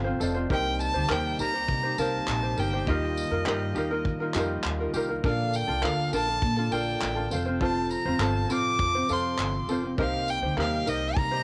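A smooth, close solo violin with vibrato and tape echo carries the melody up front from 0.5 seconds in this heartfelt, easy-going acoustic pop excerpt at 101 BPM, entering after a brief grand piano fill. Beneath it sit bright fingerpicked ukulele, a deep-toned concert grand piano and a clean, key-clicking tonewheel organ in the background, woody pizzicato upright bass, and a vintage brush kit with punchy kick, handclaps and tambourine. The chords move through Cm7, Ebadd9, Bbmaj7 and F, all captured in a small room on a homemade cassette recording.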